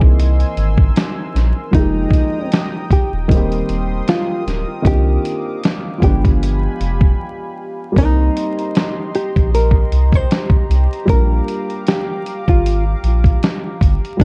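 A gently swung 77 BPM groove in 4/4 from a gritty, compressed sampler-style drum kit with thumpy kick, fat snare and hi-hat drives this hazy, melancholic lo-fi hip hop piece in C minor, where a deep, round dub sub bass sits up front beneath a woody, intimate upright piano with cassette-tape colour and audible action noise, a smooth, detuned sawtooth pad with chorus, and a clean, fingered hollow-body jazz guitar melody with tape echo that enters at 1.7 s, set in dark, dry production with vinyl crackle and a brief break at 7.2 s.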